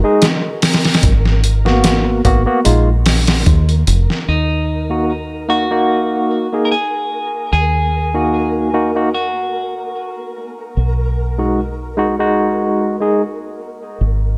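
Hypnotic and cinematic, this trip hop fragment, cut from a longer piece, settles into a lazy, lightly swung groove under a veil of light reverb and digital ambience. A barky tine electric piano carries the chords through a combo amp, its tremolo shimmering beneath vintage sampler grit and tape echo, while a flickering, grainy texture hovers in the background with a mellow, detuned glow. A compressed, pitched-down sampler-style drum kit with a thumpy kick and medium-tuned snare sits up front for the opening stretch, falling away at 4.3 seconds. A deep dub fingered bass, round and punchy with a foam-muted tone, anchors the low end from its entry onward. At 4.3 seconds a clean, picked electric guitar takes the melody, coloured by the same gritty sampler character and tape echo, before the electric piano drops out at 13.2 seconds to leave bass and haze to close.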